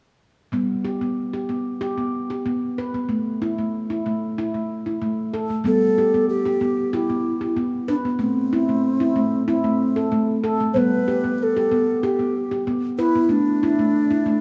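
In a straight 4/4 pulse at 94 BPM, this dreamy, calm world meditation piece in G major opens at 0.5 seconds with ringing nitrided-steel handpan arpeggios played with soft fingertips, and at 5.7 seconds an airy clay bass ocarina with a chiffy attack, vibrato and tape echo enters up front to carry the melody over a gently shifting G, A5 and Am harmony, all bathed in a moderate echo-chamber reverb.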